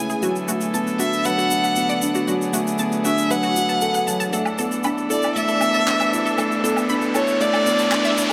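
Piano and strings electronica at 117 BPM in 4/4 with a straight feel, this short section of a longer piece has a luminous, tender mood and builds steadily throughout, moving from Bm7 to E7sus4. Up front, a single bowed violin carries the melody with vibrato, portamento and a soft attack, its expressive line treated with tape echo. Beside it, a felt-muted upright piano plays a soft, dark, intimate riff, its thick felt and audible action noise giving it an up-front, mellow character, also with tape echo. A string quartet, one player per line with a reedy, nasal gut-string tone in period chamber style, holds sustained chords beneath. In the background, a detuned sawtooth unison pluck with a sine and noise layer spins punchy, decaying arpeggios through tape echo, while shaker, woodblock and handclaps played with brushes in a small room keep an acoustic pulse. An electronic riser enters at 5.4 seconds, and a huge ambient reverb with a 5.0-second tail surrounds the whole mix.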